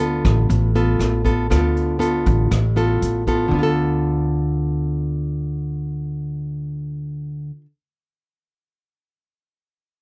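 A straight 4/4 bossa nova pulse carries this melancholic, intimate fragment, with an up-front, fingerpicked classical nylon-string guitar accompanying on a Dm6 chord, its finger squeaks audible, over a woody, dark, thumpy pizzicato upright bass on gut strings, while a distant, roomy drum kit adds hi-hat, rim click and a boomy kick from 0.2 seconds until it drops out at 3.4 seconds, the whole mix carrying very little reverb.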